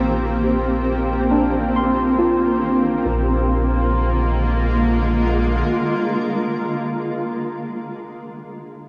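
A shimmering, ethereal pad holds sustained chords over a round sub bass and a faint, string-like drone with vibrato, and muted felt-like synth keys join with soft arpeggios at 0.4 seconds, their chorus trailed by a diffuse ambient delay. This serene, luminous ambient fragment in Bb mixolydian moves at 69 BPM in 4/4, shifting from Cm7/Bb to Bb7 at 3.1 seconds, and the sub bass drops out at 5.6 seconds. A cathedral-sized reverb surrounds the parts, and the sound of a worn, warbling cassette tape with drifting pitch gives it an aged, hazy quality.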